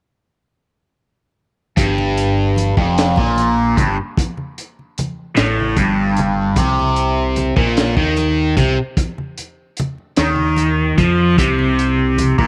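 A cranked stack guitar leads this dark, mysterious psychedelic rock excerpt, its bright, overdriven riff double-tracked and up front, colored by phaser and sitting low between F2 and F3. The piece moves in a slow 6/8 at 50 BPM counted in dotted quarters, in G minor, with the harmony resting on Gm before shifting to Bbsus24 at 6.6 seconds. Beneath it, a growling fingered electric bass adds overdriven, punchy weight in the deep register, while a crunchy breakbeat kit brings a gritty, saturated sound with a high-tuned snare, punchy kick and hi-hat, its top end rolled off. Very quiet congas with a thick skin and hard hands sit close and dry underneath. All four parts enter together at 1.8 seconds and carry through to about 12.5 seconds, wrapped in light reverb and a small room ambience.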